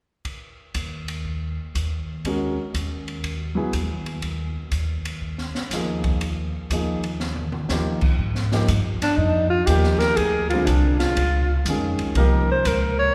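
Small-group swing and bop jazz with a playful, sophisticated mood, heard in a clip cut from a longer piece and set in a church-like space with a long, wet reverb. The drum kit brings dark cymbals, a high-tuned snare and a boomy kick, with a fill at 7.2 seconds, while a woody pizzicato upright bass and an intimate grand piano, its action noise audible, fill out the swinging groove. At 9.0 seconds a warm alto saxophone steps up front with a vibrato-laden jazz solo that carries the melody to the end.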